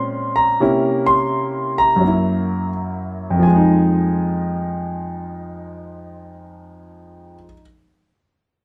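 A swing feel at 85 BPM in 4/4 carries this brief, smoky solo jazz passage in F minor, cut from a longer piece. A concert grand piano plays alone from F2 to C6, moving through Bbm9, C7b9 and Gb7 before settling on Fm7 at 3.4 seconds, where a new section begins. The piano sits up front with an intimate, natural tone, deep bass and audible action noise, set in a moderate studio reverb.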